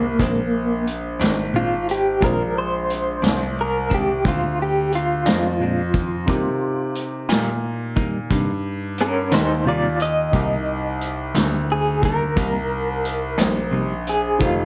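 A slightly broken-up electric guitar through a small old amp carries the melody from the start, with tremolo and plate reverb, over a picked, clean electric guitar with harmonic tremolo, a woody upright piano in the background with plate reverb, and a brilliant grand piano playing the bass line up front. A gritty vintage drum kit with a tight kick and rolled-off top joins at 0.2 seconds, and a clean electric guitar solo runs throughout this gritty, soulful slow blues in 12/8. The dark production, with light reverb, moves from Bb9 to Cm7 at 6.3 seconds in this cut from a longer piece.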